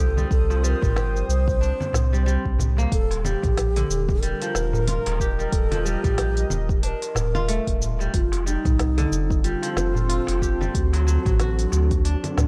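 Organic downtempo excerpt at 92 BPM with a swung 16th feel and a mystical, hypnotic mood, in which a breathy, close-miked bass bansuri sings an expressive vibrato melody through analog delay over a warbling, nostalgic tape-like pad with chorus and sidechain pumping, ringing fingerpicked kora arpeggios also fed through delay, an up-front round sub bass with sidechain pumping, and a deep electronic kick entering at 0.3 seconds, while an electronic kit of woody snare, smooth hi-hat, cabasa and congas joins at 0.2 seconds and a crisp metal-shell darbuka sits distant in the background from 0.5 seconds, all over a Cm, Ebmaj7, Fadd9 and D7 progression in a dry, gritty small-room sound.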